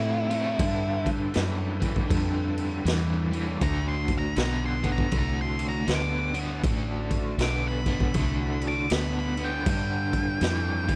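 A dark octave-fuzz lead guitar opens this swaggering, driving blues rock and southern rock excerpt with a distorted solo, over a crunchy, double-tracked overdriven rhythm guitar riff with tremolo, a round, punchy overdriven fingered bass and a thick, gritty tonewheel organ holding chords in the background with key click, chorus vibrato and slow rotary speaker. At 0.3 seconds a raw garage drum kit joins with a boomy kick, medium-tuned snare and crash cymbal, saturated and up front with a rolled-off top. The swung groove moves through dominant seventh chords in a dry, close 1970s-style studio sound.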